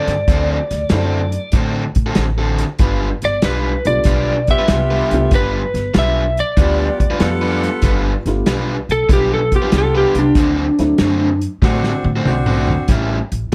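Bathed in light reverb, this swaggering, rollicking electric blues shuffle at 95 BPM puts a compressed, slightly broken-up slide guitar with slapback echo up front, played with fingerpicks, over an overdriven garage guitar riff, thumpy gut-string upright bass, a dark small-room drum kit with a punchy kick, a mellow upright piano with audible action noise in the background from 0.9 seconds, and jazz-style saxophone section stabs from 4.5 seconds, as the chords move D7, G7, back to D7 and on to A7, with a drum fill at 11.6 seconds near the end of the excerpt.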